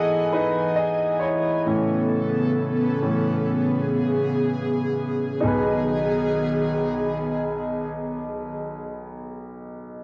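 A snug, damp booth sound with a short decay and the soft grain of a home cassette recording frames this tender, hopeful pop fragment, cut from a longer piece. In a slow, straight 4/4 at roughly 61-68 BPM in B mixolydian, a bright concert grand piano carries the accompaniment up front, its brilliant tone, deep bass and long sustain ranging from B1 to G#5. Beside it, an airy, breathy pad holds sustained chords with a slow attack and long release, its detuned sawtooth and triangle layers, noise and ring modulation thickened by chorus into a mellow, full-bodied wash. The piano leads the opening, where the tempo eases back until 5.4 seconds, moving from Emaj7 to Aadd9 before settling on B6. The pad ends at 8.6 seconds, leaving the piano to ring on until the close at 10.0 seconds.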